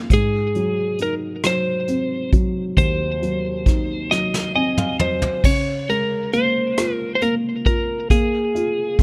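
A felt-muted upright piano opens the excerpt at 0.0 seconds, its thick-felted tone dark, mellow and intimate, with short sustain, spanning a low Eb2 up to Ab5 in a slow six-eight pop ballad at 45 BPM. Almost at once an electric slide guitar takes the melody, slightly broken-up and compressed, fingered within a narrow band from Ab4 to Eb5 and trailed by a digital delay. A soft brush drum kit joins too, distant and roomy with a punchy kick, medium-tuned snare and rolled-off top, touching hi-hat, rim click, toms and crash cymbal. The harmony moves from Ab7 to Db6 at 5.4 seconds and on to Bb5 at 8.1 seconds, carrying an aching, melancholic mood. Drums and piano each play a fill from 4.1 to 5.4 seconds, leading into the second section, all set in a small room ambience.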